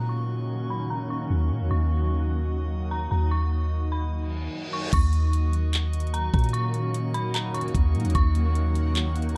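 Ethereal and melancholic, this atmospheric cloud-rap excerpt sits in Eb minor at 149 BPM with a half-time feel, resting on a single Ebm7 chord. A granular cloud pad holds blurred, evolving chords through a low-pass filter and its own reverb, pumping against the beat, while a drifting glass-harmonics texture adds calm, glassy overtones high above. A dark detuned synth bell traces an eerie, inharmonic melody in a high register, its FM tone run through chorus, low-pass filtering and tape echo. Underneath, a soft 808-style bass gives a deep, round, up-front foundation from the start. A filter sweep runs through the opening, and a downlifter with a reverse cymbal at 4.3 seconds leads into the trap drum kit at 4.9 seconds, bringing a knocking kick, metallic hi-hats, handclaps and crash cymbal to the front of a dark, dry mix.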